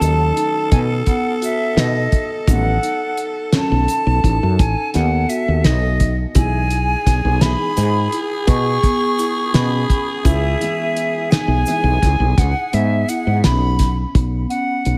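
A pure, up-front silver concert flute carries the melody with a soft attack and tape echo through this driving, bright progressive excerpt in 11/8 at 170 BPM (eighths), set in B mixolydian and moving from B7 to E/B at 6.4 s. A raspy, growling alto saxophone adds a breathy second line until 13.8 s, while a dark, mellow grand piano with ensemble chorus sits in the background until 11.9 s, and a marimba with medium mallets plays arpeggios. A woody, growly fretless electric bass and a cloth-damped, thuddy drum kit with a fat snare and tight kick push the band forward, a grainy egg shaker sits low in the mix, and plate reverb soaks the dreamy sound.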